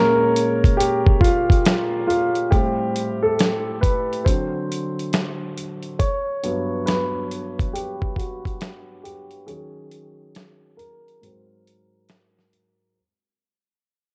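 A woody upright piano opens this hazy, reflective lo-fi hip hop fragment, playing solo chords with audible action noise and long sustain under a low-pass filter sweep, moving through jazzy harmonies such as Bbm7, D7 and Gmaj7#11. A gritty, compressed sampler-style drum kit with a thumpy kick, medium-tuned snare and hi-hat enters at 0.4 seconds with a swung sixteenth-note feel, and a break arrives at 9.5 seconds before the drums stop at 12.8 seconds. The whole passage fades out through moderate spring reverb and cassette tape colouring, with piano and drums sitting close and up front.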